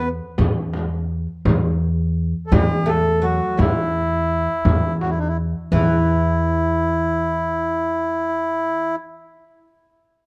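A dark production with light reverb frames this warm, stately passage, cut from a longer Arabic maqam piece in 6/8. Up front, a reedy single-reed accordion carries a clear, smooth melody touched with plate reverb, while a woody, fretless oud plucked with a plectrum on doubled strings plays a second line in the background and a thumpy pizzicato upright bass on steel strings anchors the low end. A small, bright frame drum plays from 0.4 to 6.1 seconds, and a new section begins at 5.7 seconds.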